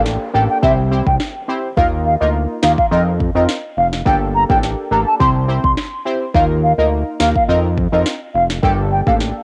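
A home cassette recording with light reverb and a tape-worn haze carries this sultry, bouncy dancehall excerpt in G minor at 105 BPM, cycling through Gmadd9, C, Ebsus2 and F7sus4. A fat, detuned sawtooth bass with saturation and filter sweeps sits up front beside an electronic afro-pop kit with a deep kick and sharp snare, while nasal, punchy synth brass stabs shimmer through chorus and phaser. A pure, wooden baroque flute carries the melody with gentle vibrato and analog delay from 0.3 seconds, over a very quiet electronic downlifter that ends by 1.8 seconds.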